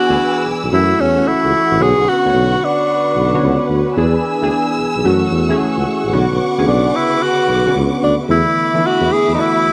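R&B at 111 BPM with a swung sixteenth-note feel, this confident, slick excerpt puts a clear, punchy tenor saxophone up front with a forceful, pop-style melody and light vibrato, while analog keys with chorus add round, detuned pulse and sawtooth tones and a dark, lush bowed string section holds expressive sustained chords. A mellow tuba enters at 0.1 seconds to carry the bass line with jazzy vibrato, and the harmony cycles through E7, F#m7 and Bmadd9 before moving to E7sus4 as a new section begins at 8.3 seconds. The sound is close and dry, with the saxophone, keys and strings carrying the character of a home cassette recording.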